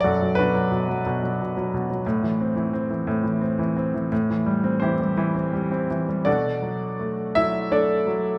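A solo grand piano sits up front in a wet recital-hall reverb, its tone clear and polished, with the clatter of the action audible beneath the notes. This short passage, cut from a longer classical piece, is lyrical and brooding with a bittersweet cast. The music moves in 3/4 at roughly 81 to 93 BPM, and the rubato lets the pulse breathe freely. The piano ranges from F#2 up to E5, and the harmony drifts from Bm7 through Am and Am7 before returning to Bm7 at 6.3 seconds, where a new section begins. The close, intimate piano sound and the resonant hall give the fragment a reflective, private feel across its 8.4 seconds.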